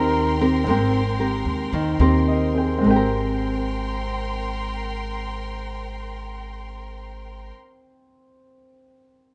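A breezy, sunny bossa nova fragment in Ab major opens on an Abmaj9 chord. Thumb-plucked classical nylon-string guitar and natural-sounding grand piano play the accompaniment over a woody pizzicato upright bass set up front, while a lush, clear string section holds bowed, sustained chords with vibrato. The straight 4/4 tempo, between 104 and 119 BPM, slows through the opening, where the piano adds a fill from 1.7 s to 2.8 s; under light reverb, the guitar falls away at 7.7 s and the piano carries on alone until 9.3 s.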